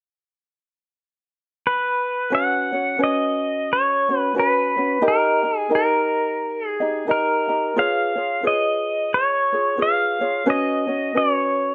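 Hawaiian music at a relaxed 88 BPM in 4/4 with a lilting swing, languid and sunny in B major, cut from a longer piece. A clean, twangy electric pedal steel guitar, played with fingerpicks, carries the melody from 1.7 seconds, gliding with slide and volume swells under compression, while a light, thumb-plucked acoustic ukulele joins up front at 2.3 seconds. The chords move through Bsus2, D#, C#7 and F#sus4 in a small room with light reverb.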